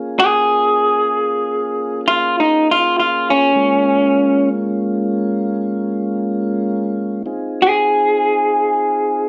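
Set in a moderate studio room with plate reverb, this mournful, soulful blues fragment pairs a soft, flute-like tonewheel organ, its sustained chords turning through a slow rotary speaker with a touch of key click, and a dark, slightly broken-up electric guitar through a small old amp that enters at 0.2 s with a compressed, lo-fi, fingered melody up front over Bbm7 shifting to Fm7 at 7.3 s.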